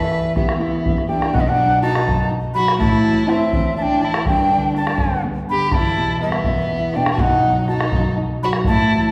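An airy, woody large quena with a crisp, chiffy attack and vibrato carries the melancholic, wistful melody of this Andean folk ensemble piece in 6/8. A rich, smooth bowed violin adds a second line, while a small, up-front nylon-string guitar, thumb-plucked and warm, supplies the accompaniment, and a deep, dark bombo with a vintage, band-limited tone plays from 0.1 to 8.8 seconds. The ensemble sits in the wet reverb of a church or concert hall, in a brief passage cut from a longer piece.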